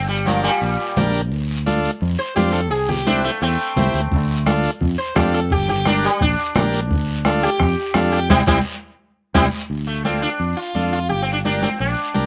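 This short cut from a longer piece sounds dry and open-air, with little reverb and the sitar, bass and organ placed up front. It is a driving, fiery cumbia in D minor at 172 BPM in a straight 4/4, and a bright, buzzing sitar carries the melody from the first second, its plucked tone shimmering with sympathetic strings as it solos through 9.7 seconds. Underneath, a fingered electric bass gives a warm, amped low end, while an overdriven combo organ with light vibrato fills in a vintage, gritty accompaniment. Ringing congas with hard hands and a slapback echo sit further back, joined by a raspy, quietly mixed guiro, and a soft-beater bombo with a band-limited sound adds weight from 4.1 to 9.4 seconds. The chords move among Gm, Dm and C, and a band accent marks the close of the solo before a brief new section begins at 9.7 seconds.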